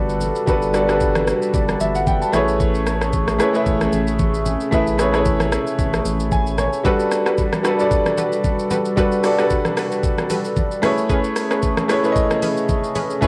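Recorded at home onto cassette, this amapiano excerpt sits in light reverb and digital ambience, with a relaxed, warm mood and a gently swung sixteenth-note feel in 4/4. A clear, boxy grand piano carries the accompaniment up front. Behind it, a soft, hollow, flute-like pad holds sustained chords in the background, shaped by chorus, sidechain pumping and tape colour. The smooth electronic drum kit, re-recorded in a small room, pairs a knocking kick and metallic hi-hats with rim clicks and shaker, while very quiet, low-tuned congas with thick, damped skins add live-room texture. A deep, saturated sine sub bass holds the low end until 6.7 seconds, dropping out during a brief piano fill, and at 6.8 seconds a round, detuned analog pluck enters with chorus and tape echo, bright but set back in the mix. The harmony moves between Gmaj9 and Amaj9 chords throughout.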